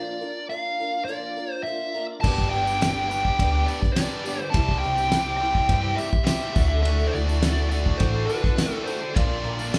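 In a straight 4/4 feel, this hopeful, open-road folk rock and heartland rock piece opens with a dark, smooth overdriven lead guitar carrying the melody up front. Beneath it sit a woody, boxy old acoustic guitar and a very quiet, piping tonewheel organ with key click and rotary speaker holding sustained chords. At 2.2 seconds a dry, damped 70s drum kit with a fat snare, tight kick and dark cymbals arrives, along with a round hollow-body electric bass and a bright, biting double-tracked guitar riff; a jingly tambourine joins in the background from 2.4 seconds, as the band plays live in one large studio room through Bb, G, C and Dadd9.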